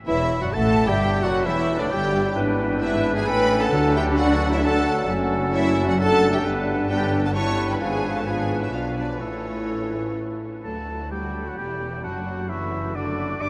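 A quick classical-period movement for symphony orchestra, graceful and lively, moves in a flexible, rubato triple metre through a short span cut from a longer piece. A lush, bowed symphonic violin section carries the melody with smooth vibrato, while a clear oboe, an airy silver flute, a very quiet chamber violin section and a clarinet in the background play second lines. Beneath them, a dark bassoon and a very quiet, distant viola section provide accompaniment, the bassoon dropping out at 10.4 seconds, and a mellow French horn section holds sustained chords in the background. A close, expressive double bass section and a distant cello section anchor the bass, and a very quiet timpani, played with medium mallets on calf heads, sounds on D from 3.7 to 4.4 seconds as the harmony arrives on D. A huge, wet reverb places the whole orchestra in a vast, echoing space, and a new section begins at 10.6 seconds as the harmony settles back onto D.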